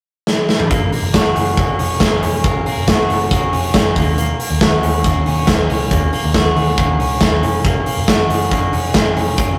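A drum fill on a big rock kit opens this short cut from a longer piece at 0.3 seconds, its punchy kick and medium-tuned snare sitting up front in a roomy acoustic sound. At 0.7 seconds the music settles into a breezy, nostalgic stretch of jangly indie pop at 138 BPM in a straight 4/4, in F# major and tuned slightly flat to A4 = 436 Hz. A bright, slightly broken-up electric guitar through a small old amp plays picked arpeggios, its compressed, lo-fi tone dressed in spring reverb and digital delay. Underneath, a vintage foam-muted electric bass adds a dark, round, amped foundation, while the kit keeps hi-hat, kick, snare and toms moving. The harmony moves from F# to D#m7 and back to F#, all captured in a rough rehearsal-room recording with moderate studio reverb and a touch of tube saturation.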